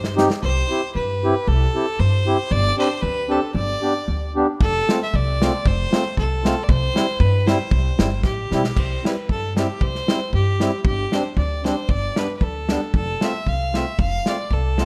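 A gently swung, rubato two-beat pulse drives this bouncy, festive alpine folk dance band clip, cut from a longer piece, where a biting, clear bowed fiddle with light vibrato carries the melody over a reedy, mellow accordion, a woody, thumpy pizzicato upright bass, and a tight, small-room acoustic drum kit that opens with a brief fill, returns at 4.6 seconds and fills again at 8.2 seconds, all in a dark production with light reverb.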